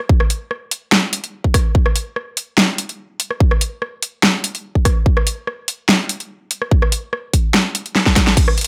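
Dry and up front, this aggressive, heavy dubstep drop at 145 BPM in a half-time 4/4 feel pairs a punchy, overdriven electronic kick with a layered drum kit of huge snare, metallic hi-hats, rim clicks and crash cymbal, closing on a drum fill from 8.0 to 8.4 seconds.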